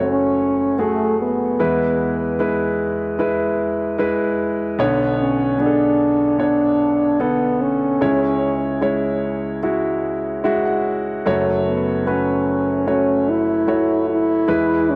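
Pop at 74 BPM in F# minor, emotional and heartbroken, this fragment of a longer piece sets a warm, roomy French horn melody with light vibrato in a classical style against a clear, intimate concert grand piano accompaniment with deep bass, long sustain and audible action noise, both carrying a cassette tape character and light studio reverb, as the chords move from F#m through E, Bmadd9 and C#m, and a piano fill arrives at 10.0 seconds before the return to F#m.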